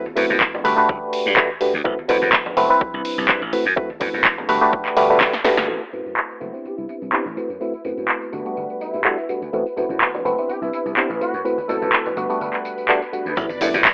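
A reedy, clean electric piano opens this nostalgic, funky slice of filtered disco house, sitting up front with a phaser, a pumping sidechain and a low-pass filter sweep. A growly, bright slap bass with tube saturation, a punchy overdriven kick and an up-front analog drum machine join almost at once, the machine supplying handclaps, hi-hat, snare, tambourine and crash with a gently swung sixteenth-note feel. Ringing congas and egg shaker played with hard hands add a small-room acoustic layer, pausing through the middle. After a drum fill and band accent, a lush, vintage string machine with ensemble chorus enters in the background at 5.7 seconds while the kick sits out, and a clear horn section with light vibrato and tape echo carries the melody from 6.6 seconds. The mix has a gritty, telephone-like hardware character with light digital ambience, and the kick returns at 13.4 seconds, followed by a very quiet sub drop at 13.5 seconds as the chords cycle back home.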